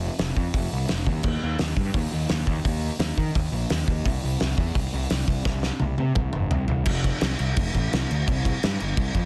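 Punk rock at 171 BPM in a straight 4/4, this rowdy, rebellious fragment pairs an up-front, overdriven fuzz picked electric bass, ranging from F1 to Eb3, with a loose indie drum kit of crash, hi-hat, kick, snare and toms. The acoustic kit sits in a pumping studio room with dark cymbals, a fat snare, a punchy kick and a rolled-off top. A drum fill from 5.5 to 6.9 seconds leads into a new section, all of it held in a dense, heavily limited modern master with little reverb.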